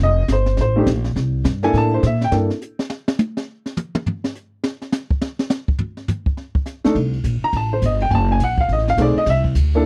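Swinging and relaxed, this short cut from a longer jazz piano trio piece moves at a brisk 207 BPM in 4/4 with a moderate swing on the eighth notes. The upright piano carries the melody in a solo spanning the excerpt, its tone woody, slightly detuned and vintage with long sustain, while the pizzicato upright bass, dark and thumpy on gut strings, sits beneath it. Piano and bass play from the start, drop out at 2.5 seconds, and return at 6.8 seconds, leaving the brush kit to take a solo at the center. That kit enters at 0.3 seconds, played with brushes in a small room, with a high-tuned snare, boomy kick, dark cymbals, hi-hat and toms. The harmony opens on F9 and C13, falls away during the drum break, then returns through chords such as Gmadd9 and F#m6 before closing on Cadd9. It is a dry, close 1970s-style studio sound, with all three instruments placed up front.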